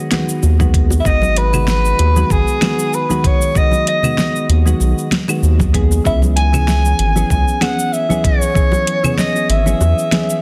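A mellow soprano saxophone with vibrato and scooped notes, bathed in tape echo, carries the jazz-style melody from 1.0 s over a round, deep analog bass, soft chorused electric-piano-like synth keys, a gritty, thumpy electronic kick, a layered deep house kit of fat snare, metallic hats, cabasa and claves, and bright congas and bongos in the background, as this smooth sunset chillout excerpt at 96 BPM in G# minor moves from G#m7 to C#m7 at 6.1 s under light digital ambience and a dense modern master.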